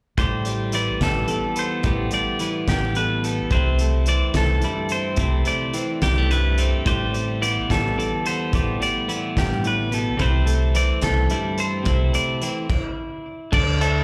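A bright, up-front twelve-string electric guitar carries the accompaniment in this short math rock and midwest emo excerpt, its clean, compressed, picked chords spanning E2 to A4 and moving between Am11 and C6 before landing on Dsus2 at 13.5 seconds. Above it, a twangy clean electric guitar plays arpeggios between G4 and D5, coloured by digital delay and slapback echo. A dark, round fingered electric bass sits low, between A1 and D2, with a direct tone. A loose indie drum kit with a fat snare, punchy kick, dark cymbals and a pumping room sound drives the playful mood at 72 BPM in a straight 6/8, tuned to A4 = 435 Hz. The whole band halts in a stop from 12.7 to 13.5 seconds, and it comes across like a live gig heard through a venue's PA with club reverb in a small room.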